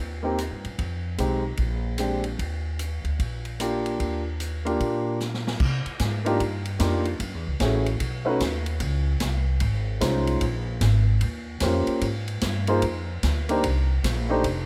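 A swung 4/4 pulse at 149 BPM drives this brassy big band swing excerpt in Eb major, where a woody, growly pizzicato upright bass sits up front beside a long-sustaining grand piano voicing rich jazz chords, while a natural-sounding studio drum kit with punchy kick, medium-tuned snare, ride, hi-hat, rim clicks and crash plays a fill at 5.2 seconds that tips the tune into C minor at 5.6 seconds, all under light reverb.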